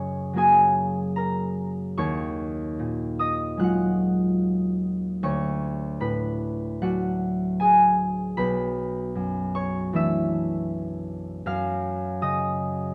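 A flexible pulse of about 76 beats per minute in 4/4 moves with uneven, rubato timing through this brief passage cut from a longer classical piece for solo harp, graceful and serene in F# mixolydian. The concert harp carries everything alone across the full 12.9 seconds, thumb-plucked and ringing, sitting up front with an acoustic warmth as it spans from B1 up to F#6. Its harmony drifts from F#6 through D#m11, D6 and Bm11 before settling on F#maj7(no3) at 11.5 seconds. A moderate recital-hall reverb with a 1.5-second tail gives the notes room to bloom, and the overall production leans dark and warm.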